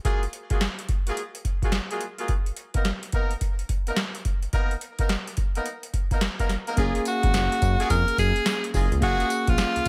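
Bouncy and punchy, this new jack swing R&B cut rides a swung sixteenth-note groove. A booming analog drum machine drives it from the start with a deep kick, crisp snare, metallic hi-hats and tambourine, overdriven and treated with gated reverb so it sits up front. A clear horn section punctuates with stabs in octave-doubled, vibrato-tinged ensemble voicings, moving from F#maj9 to Bmaj7 and back. At 6.8 seconds a smooth, mellow synth bass built from detuned sawtooth and triangle tones arrives alongside a bell-like tine electric piano playing clean accompaniment. Shortly after, at 7.1 seconds, a forceful tenor saxophone takes the melody in a jazz style, its vibrato-laden tone placed prominently at the front. The sound overall is dry, with little reverb, giving the short fragment a close, tight feel.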